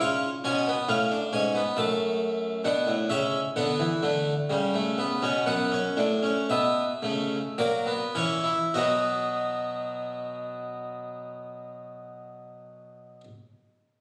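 Heard through a phone in a recital hall, the recording carries a wet wash of reverb with roughly 1.6 seconds of decay, added studio ambience and compression. This is a short excerpt from a longer piece: a serious, contemplative baroque-style fugue in three parts, played on a solo harpsichord in 3/4 at a slow, straight pulse between 50 and 69 BPM. The French-style harpsichord, with its three sets of strings, sits up front with a plucked, brilliant, mid-forward tone, ranging from F#2 up to A5. Its harmony moves from C#7 through F#m, Bm and A13 to F#7sus4 and F#7, with the tempo slowing from 1.3 to 8.7 seconds. At 8.7 seconds a new section arrives on a B chord, and the instrument falls silent at 13.2 seconds.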